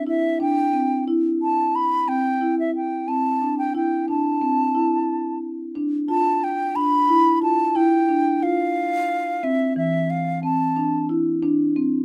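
Restless and urgent, this contemporary instrumental piece is cut from a longer work and moves in an uneven 11/8 metre with a straight feel. A bright wooden flute carries the melody high in its range, its airy tone shaped by vibrato, a soft attack and lifted highs, and it sits up front in the mix. Underneath, a marimba played with soft mallets spins arpeggios in a lower register, sounding mellow and round while also placed up front. The harmony moves from a C6/9 colour into a second section at 5.8 seconds built on an open G7, later a D7sus2 over E and finally a Csus2. A moderate studio reverb gives both instruments a sense of space, and the flute drops out at 11.1 seconds while the marimba continues to 12.0 seconds.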